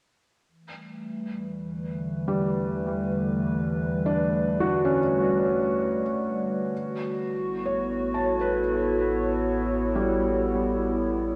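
Ambient music in free time and E dorian, reflective and melancholic, where a round analog bass fades in from 0.5 s with tube saturation, a dark, warbling tape-like pad with chorus enters at 0.9 s to hold sustained chords from Em to A, and a felt-muted upright piano with audible action noise joins at 2.3 s with intimate arpeggios trailing into diffuse ambient delay, all set in a lush hall reverb on worn cassette tape with drifting pitch.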